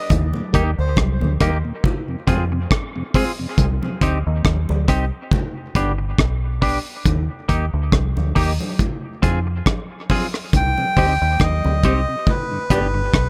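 A heavy, meditative dub reggae groove at 69 BPM in C minor with a lightly swung 16th feel rests on a dry, dark drum kit with a tight kick and a round, foam-muted fingered bass up front, while distant, ringing congas, a bright, clean semi-hollow guitar with vibrato effect and a background tonewheel organ with key click and slow rotary speaker add echoing colour, and a reedy, breathy melodica with dub echo sounds briefly at the start and returns at 10.6 seconds over a cycling Eb, Fm, Cm, G progression in this short cut from a longer piece.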